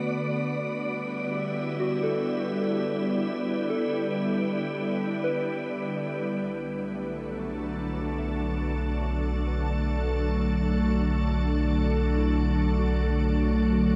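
Spacious and melancholic, this slow ambient excerpt at 78 BPM sets a pure, organ-like pad holding sustained Em7 and later Dmaj7/B chords up front, while a soft FM synth bell drifts in gentle arpeggios through chorus, analog delay and shimmer reverb, a breathy wind-like noise texture hovers high in the background, and a round sub bass enters at 6.4 seconds, all within a dreamy, reverb-soaked cassette-tinged space.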